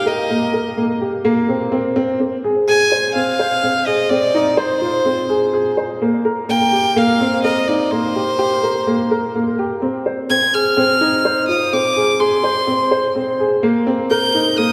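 Cinematic and hypnotic, this electronica piece moves in a straight 4/4 pulse and is cut from a longer work. A single bowed violin carries the melody from start to finish, its soft attack, airy sul tasto tone and floating purity sitting close and up front. Beneath it, a dark upright piano repeats a mellow, woody riff with short sustain, touched by subtle chorus. Both parts pass through tape echo, and a lush hall reverb soaks the whole mix in a dreamy haze. The harmony circles between Cm7 and Fm7, with a drop running through the passage and renewing at 9.8 seconds as the opening section repeats.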